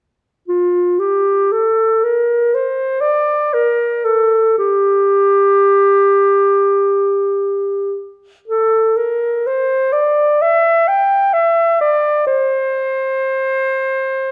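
Set in a dark production with a lush recital-hall reverb, this lyrical, serene classical excerpt features an unaccompanied clarinet, clear and up front, playing freely with expressive rubato at a slow 56-66 BPM in 4/4, tuned to A4 = 445 Hz, and ranging from F4 to G5 between 0.5 and 14.3 seconds.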